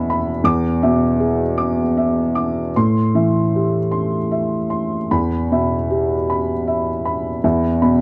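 A felt-muted upright piano plays alone through this brief 8-second excerpt of neoclassical minimalist piano, its soft, boxy, dark tone sitting up front and spanning E2 to D6. In E minor at 77 BPM in 3/4, the rubato phrasing gives the beats an uneven, intimate and melancholic feel as the harmony moves from E7 to Am7 and settles on Em at 5.1 seconds. The dry, close 1970s-style studio sound carries only a light reverb.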